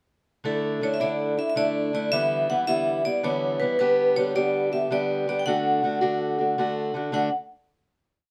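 A hard-mallet vibraphone carries the motif-based tune in song-like phrases, its metallic, ringing tone shimmering with a fast motor vibrato, in this cheerful, rollicking Celtic folk slip jig in 9/8 at 108 BPM in D major. Beneath it, a boxy parlour steel-string acoustic guitar with fresh strings sits up front, fingerpicking open chord shapes in eighths with the odd finger squeak as the harmony moves from Dsus2 through Em/D and G/D back to D. The short, complete piece is captured with close, detailed microphones and light reverb, and it ends on a final chord at 7.1 seconds.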